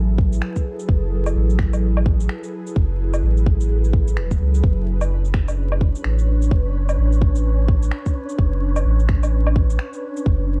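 Rainy and melancholic, this future garage excerpt moves at 128 BPM in 4/4 with a swung sixteenth-note feel, cut from a longer piece. An ethereal, airy pad holds sustained chords throughout, moving from F#m11 to Bmadd9/F# at 4.6 seconds, its detuned, mellow tone softened by ensemble chorus, phaser, reverb and sidechain pumping. Beneath it, a deep, round dub sub bass sits up front, tube-saturated and pumping with the sidechain. A tight, tape-tinged electronic kick leads the drums with 12-bit sampler grit and studio reverb, while a quieter layer of electronic shaker, finger snaps and woodblock carries the same gritty character. At 5.3 seconds a faint, breathy, wind-like tuned noise texture drifts in on C#5, adding a dark haze, and the whole mix has a dusky, digital ambience flecked with vinyl crackle.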